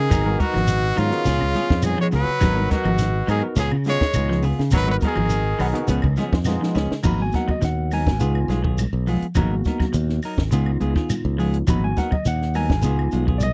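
Afrobeat at 104 BPM in G# dorian, this intense, funky passage from a longer piece rides a G#m9 to C#7 vamp. A close-miked trumpet carries the melody over a raspy, gritty tenor saxophone, with a punchy trombone section joining briefly at 5.6 seconds. Beneath them sit a growly, up-front fingered bass, two clean semi-hollow guitars (one playing background arpeggios, the other dark stabs), a compact cocktail kit with a high-tuned snare and dark cymbals, and grainy shekere, woody claves and very quiet congas. After a drum fill, a barky tine electric piano played through a combo amp takes a solo from 7.0 seconds, all captured in a dry, close 1970s-style studio sound.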